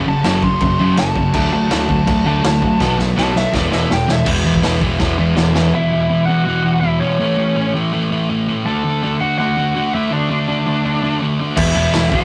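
A straight 4/4 punk rock drive at 164 BPM opens this rowdy, energetic fragment: a raw garage drum kit with a punchy kick, a gritty, pumping small-room sound and a rolled-off top sits up front beside a dark, sludgy distorted guitar riff, while a bright, compressed overdriven guitar, a very quiet double-tracked scooped high-gain guitar and a round, growling picked bass fill in behind; a biting lead guitar solos until 4.3 seconds and keeps its melody going after the drums drop out at 5.6 seconds and the bass and two background guitars at 5.7 seconds, leaving it alone with the sludgy riff over E5, A and D until the full band returns on E at 11.6 seconds, all in a rough rehearsal-room recording with tube saturation and light reverb.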